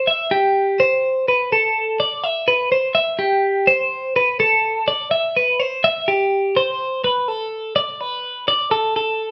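Playful and bright, this short rock excerpt moves in 6/8 at 83 beats per minute, felt in dotted quarters with a straight feel. A lone twelve-string electric guitar carries the whole fragment, running from 0.0 to 9.3 seconds. Its clean, picked tone is twangy and compressed, sitting up front in the mix and staying within a compact range from G4 to E5. The sound has the openness of a band playing live together in one room, wrapped in a moderate large-studio reverb with a 1.1-second tail. After an opening passage, the music shifts to a new section at 8.0 seconds, just before the cut at 9.3 seconds.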